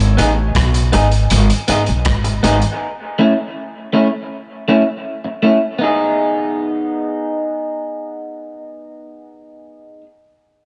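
Deep and meditative, this dub reggae fragment opens with a woody, thumpy pizzicato upright bass and a gritty, saturated breakbeat kit of tight kick, hi-hat and rim click; the bass stops at 2.6 seconds and the drums at 2.8. An up-front electric guitar at the edge of break-up, picked and compressed, carries on alone until 10.1 seconds, bathed in lush chorus and dub echo. A light reverb gives the whole a small-room ambience.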